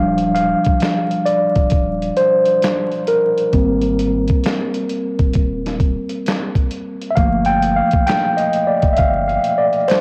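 Vinyl crackle wraps this dreamy lo-fi hip hop excerpt in light digital ambience, like a home recording on cassette. At a relaxed 66 BPM in 4/4, with a 65% swing on the sixteenths, a mellow tine electric piano takes the solo throughout, sitting up front with a clean, direct tone softened by tape and a low-pass filter as it moves through Ebmaj9, Abmaj7 and Gm7. A dusty, sampler-style soul drum kit comes in at 0.2 seconds, compressed and gritty, with a thumpy kick, a medium-tuned snare, hi-hat and handclaps that sound re-recorded in a large room. Beneath them, a soft dub sub bass gives a deep, round tone with a fast attack and sustained notes, warmed by transformer saturation, before dropping out at 9.4 seconds. Very quiet finger snaps with a human, acoustic feel appear at 8.1 seconds, captured in a small room.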